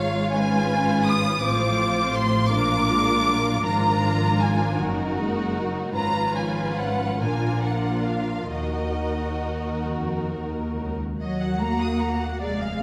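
Swaying in a rubato 6/8, this slow, yearning and elegiac classical movement for string orchestra is a short cut from a longer piece. An up-front violin section carries the lush melody high in its range while a close, expressive second violin line and smooth violas accompany, soft-attacked, woody cellos sit in the background, and a focused, rich double bass section lies underneath, all bowed with vibrato. A wet scoring-stage reverb surrounds the ensemble as the harmony sighs through diminished and dominant chords to settle on the minor tonic before a new section begins at 11.2 seconds.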